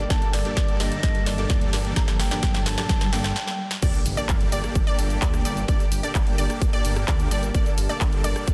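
A short cut from an emotional, powerful festival progressive house track in G minor at 129 BPM opens on a Gmadd9 chord, with an airy baroque flute melody carrying vintage sampler grit and dub echo over a very quiet, lush pad, a huge compressed supersaw riff and a menacing detuned saw bass, both pumping to the sidechain. A punchy layered kick sits up front beside a big-room kit of snare, handclaps, hi-hat, rim click, cabasa and crash, while a dark, clean semi-hollow electric guitar with analog chorus and a faint riser-and-impact effect fill out the build-up before a brief break. At 3.8 seconds the flute stops and the drop arrives, bringing a bright, ring-modulated unison pluck arpeggio with filter sweep and dub echo over a dense, heavily limited master with light digital reverb.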